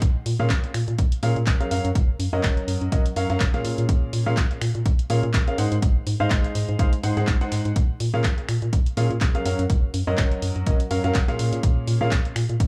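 A swung 4/4 groove at 124 BPM, built on an up-front, punchy electronic kick, analog drum-machine finger snaps, handclaps and hi-hat, and a very quiet, gritty sampler-style soul kit adding hi-hat and a fat snare, drives this energetic, soulful piano house cut in Bb minor, where a hollow, dark, organ-like FM bass with tube saturation and sidechain pumping underpins a clear, up-front concert grand piano riff that enters at 0.4 seconds with digital delay and its own sidechain pumping, cycling through Bbm7, Gbmaj7 and Ab7 in a dry, small room ambience as part of a longer piece.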